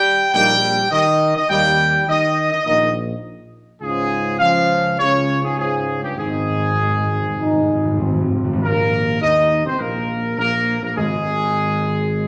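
Triumphant and majestic, this classical brass passage, cut from a longer piece, moves at a stately 103 BPM in 4/4. A bright, tight trumpet section carries the melody up front over sustained chords from a mellow French horn section and a dark, distant, roomy trombone section, while a smooth-topped tuba holds the bass; the trombones and tuba both carry light vibrato. Timpani played with medium mallets on plastic heads enter with a fill at 6.2 seconds, and a wet, large studio reverb adds grandeur.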